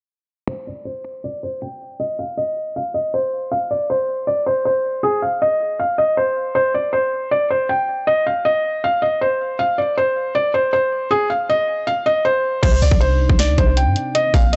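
At 158 BPM in 4/4 with a half-time feel, this brooding, melancholic trap excerpt, tuned to A4 = 441 Hz, opens with a felt-muted upright piano playing the melody on its own from 0.5 seconds. The piano sounds soft and intimate, with audible action noise, and a low-pass filter sweep runs across its solo passage until 12.6 seconds. At that point a trap drum kit, a clean 808-style bass and a dark analog pad all enter together over a Cmadd9 chord. The drums sit up front with a hard-clipped kick, a sharp snare, bright hi-hats and a crash cymbal, while the 808 is deep and boomy, and the pad holds detuned, sustained chords with a subtle chorus. Light reverb and a dark, warm production with nothing above 8.0 kHz keep the mix moody until the fragment ends at 14.6 seconds.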